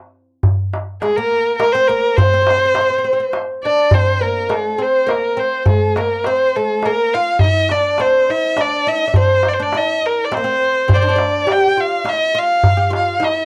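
Melancholic and soulful, this Arabic maqam ensemble piece moves at 103 BPM in a straight 3/4, opening with a crisp metal-shell darbuka at 0.4 s before a rich, expressive bowed violin joins at 1.0 s with vibrato and portamento, ranging from Ab4 to G5, backed by a woody, plectrum-plucked fretless oud playing a deeper second line, all captured in a dry, close 1970s-style studio sound that shifts into a new section at 3.9 s.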